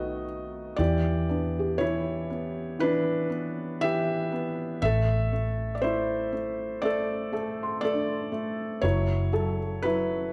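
Heard through the lingering reverb of a recital hall, this reflective, heartbroken acoustic folk-pop ballad fragment sets an intimate felt-muted upright piano melody, up front with audible action noise, over thick-felted piano arpeggios of short sustain and a round, foam-muted fingered electric bass, moving from B7 through Em7 and Am to F#m7.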